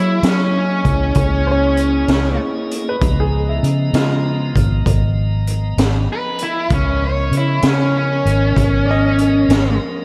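Swaggering and gritty, this slow 12/8 blues excerpt at 65 BPM in Db mixolydian moves from Gb13 to Db13 at 3.0 seconds, with an overdriven, bright guitar carrying the melody up front over a dark, foam-muted fingered bass and a raw garage drum kit with a boomy kick, high-tuned snare and hi-hat, while a piping tonewheel organ holds chords through a slow rotary speaker, a woody upright piano with audible action noise enters on a second line at 1.5 seconds, and a lush hall reverb soaks the mix in a dreamy haze.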